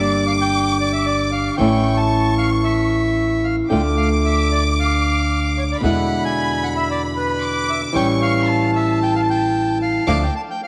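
This tango fragment, cut from a longer piece, moves in a tense, passionate 4/4 with a rubato feel that lets the phrasing breathe. A reedy, smooth bandoneon carries the melody, while a bowed studio violin section sits above it with a second line, its vibrato and soft attack giving the ensemble a dusky, woody glow. Close beneath them, a small-sounding fingerpicked nylon-string guitar sits up front in the accompaniment, and an upright bass plucks thumpy gut-string notes in its low register. The harmony travels from Gm through A, Dm, E7 and A7 before settling on Dm, where the band lands a shared accent at 10.1 seconds. A moderate echo chamber reverb lends the recording a roomy depth.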